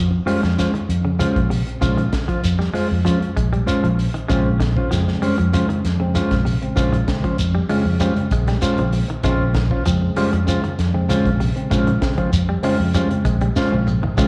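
The round, punchy fingered electric bass sits up front in this funky, driving afrobeat excerpt, holding down a low groove in Bb dorian at 97 BPM over a single Bbm9 chord. A dark, clean mellow electric guitar plays up-front stabs with a slapback echo, while a bright, picked semi-hollow guitar spins arpeggios in the background. A crunchy breakbeat drum kit with a high-tuned snare, tight kick and gritty, saturated, rolled-off top enters at 0.3 seconds alongside a grainy shekere. At 4.3 seconds a bright tine electric piano joins in the background with its own slapback echo. The recording has the feel of a live gig heard through a club PA, with light reverb and small-room ambience, and a drum fill at 13.6 seconds caps the passage.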